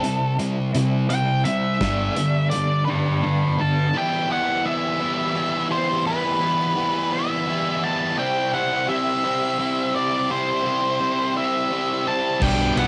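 A dark, fuzzy octave-fuzz lead guitar opens this brooding quiet-loud alternative rock passage at 56 BPM in 6/8 with a half-time solo, over a bright, up-front thick fuzz guitar riff, a second fuzz guitar in the background, slightly broken-up tremolo arpeggios from an electric guitar through a small old amp, a loose indie drum kit with a pumping small-room sound, and brief round, hollow-body picked bass. At 3.9 seconds the arpeggios, drums and background fuzz guitar have dropped away, and a swirling vintage string machine with phaser and ensemble chorus holds sustained chords behind the lead and riff, moving from Em to C. At 12.4 seconds the drums, bass and second fuzz guitar return alongside a double-tracked, compressed distorted electric guitar riff, the whole passage captured as a home cassette recording.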